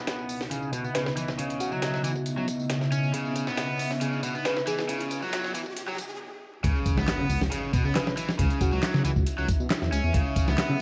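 An overdriven, bright guitar riff opens this funky, energetic breakbeat excerpt under a filter sweep, soon joined by a gritty, compressed sampler-style drum kit with a thumpy kick, background tambourine and handclaps, a moody, sidechain-pumped pad with chorus and phaser, a background riser and impact, and a sparkling, bell-like FM electric piano melody with tremolo, delay and a telephone tone, until a stop at 6.2 seconds gives way to the drop at 6.6 seconds, where a deep, rumbling detuned saw bass enters amid vinyl crackle and light digital ambience.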